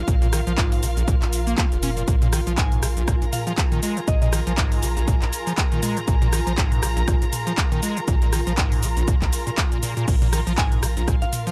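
Gritty and raw, this acid house excerpt at 120 BPM swings its 16ths over a punchy, tape-warm electronic kick, a booming analog drum machine with metallic hats, claps, rim clicks, shaker, toms and crash, and a round sine sub bass pumping in the background. A squelchy, resonant square-wave acid bass riff with filter sweeps, overdrive, chorus and delay drives the groove, while a moody, detuned sawtooth pad holds dark sustained chords and a distant, woody bowed string section adds a dark texture, both pumping with the sidechain. A soft, warbling FM synth bell adds brief chorused and delayed phrases around 2.6 seconds and again at 10.6 seconds, all in a dry, close-sounding mix.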